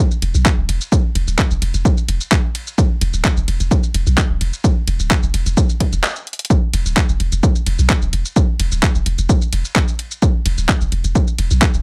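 Minimal techno at 129 BPM in a straight 4/4, clinical and sparse, built on an up-front analog electronic kick drum with a punchy character and a small-room ambience. A deep sine sub bass with a pitch-drop attack pumps from the sidechain beneath it, while a layered electronic garage kit adds handclaps, bright hi-hats, ride cymbal and shaker in its own small room. The dry mix runs as two drops split by a short break, with a band accent at 6.0 seconds and a drum fill at 6.3 seconds before the groove resumes at 6.5 seconds.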